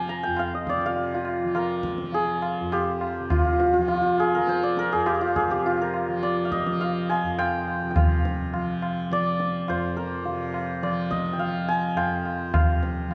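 Hindustani classical music in raga Bhimpalasi on F, meditative and longing, moving in 4/4 at 104 BPM and gradually speeding up across this section cut from a longer performance, with a shift into a new passage at 8.0 s. An up-front, hammered santur carries the ringing melody over a bright, buzzing tanpura drone, while a low-tuned tabla with a short ring joins at 0.1 s. Everything sits in a wet recital-hall reverb and carries the worn, warbly pitch drift of old cassette tape.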